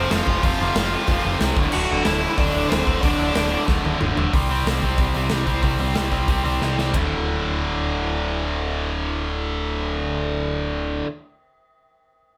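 Punk rock at 184 BPM in a straight 4/4, rebellious and upbeat, heard as a short cut from a longer piece played live by a band in one room with moderate studio reverb. A dark, overdriven lead guitar carries the melody only for the opening 3.7 seconds, while a tight, bright, double-tracked distorted guitar drives the riff up front through the whole passage. Underneath, a growling picked electric bass with a punchy, overdriven edge holds the low end. The acoustic drum kit sounds big and pumping in its room, with bright cymbals, a medium-tuned snare and a punchy kick, and it fires off fills at 3.7 and 6.6 seconds before dropping out at 7.0 seconds. The harmony moves from F5 and D to C5 and then D5 as the music passes through three short sections.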